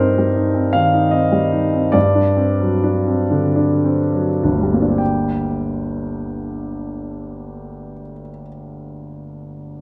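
Brooding and bittersweet, this short excerpt cut from a longer piece is a romantic classical character piece for solo piano in G minor. It moves in a slow, rubato 6/8, with the dotted-quarter pulse sitting between 33 and 53 BPM, and it slows down over the first 5.0 seconds. A grand piano with a smooth, vintage tone and long sustain plays alone and up front from start to finish, spanning G1 to G5. The harmony begins on C minor over G, shifts to D7 over G at 1.9 seconds, and settles on G minor as a second section opens at 5.0 seconds. A moderate concert hall reverb, about 2.0 seconds long, surrounds the instrument with a sense of space.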